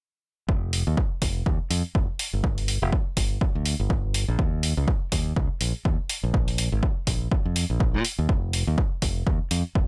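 At 0.5 s a bright, direct fingered electric bass and a punchy analog kick drum enter together, opening this smooth, moody deep house excerpt at 123 BPM in 4/4 with a 57% swing on the sixteenths. An electronic hi-hat joins at 0.7 s, sharing the kick's tape-warm character and the feel of having been re-recorded in a small room. The bass moves between F1 and Bb2, pumping through sidechain compression while a low-pass filter sweeps across its tone for the whole passage. Kick, hi-hat and bass all sit up front in a dry, close mix with very little reverb. The groove holds as a single section until the hi-hat drops away at 9.6 s and the bass and kick stop at 9.9 s, a short slice cut from a longer piece.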